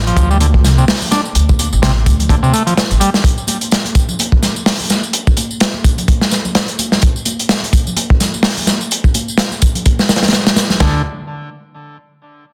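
Raw and swaggering, this swung breakbeat cut rides a gritty, saturated drum kit with dark cymbals and a tight kick up front, with ringing hard-hand congas and a layered tambourine tucked behind, while a woody, growly pizzicato upright bass and a buzzy vintage combo organ with tape echo and 12-bit sampler grit play over a D5 chord for roughly the first 3 seconds and return briefly at 10.8 seconds, all set in a small room under a dense, heavily limited master.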